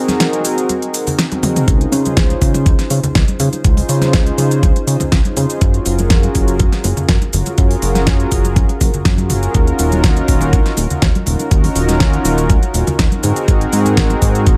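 A sunny, feel-good nu-disco excerpt cut from a longer piece, moving at 122 BPM in a straight 4/4 in Db major, tuned slightly below standard pitch. It opens with a brief break in which a smooth, detuned sawtooth pad sits up front alongside a tape-warm pop drum kit of crisp hats, fat snare, cabasa and toms, with bright, thin-skinned congas placed close yet in the background. A drum fill at 1.3 seconds leads into the full groove at 1.7 seconds, where a knocking, layered electronic kick lands up front and a fat, thick sawtooth bass enters with a fast attack, sustained notes and a filter sweep. The pad carries chorus, delay and sidechain pumping, its dark, slow-attack tone with a sub octave holding the harmony between C4 and C5. The chords move from Ab7 to Dbmaj7, Gbmaj7 and Ebm9 before returning to Ab7, all set in a digital ambience.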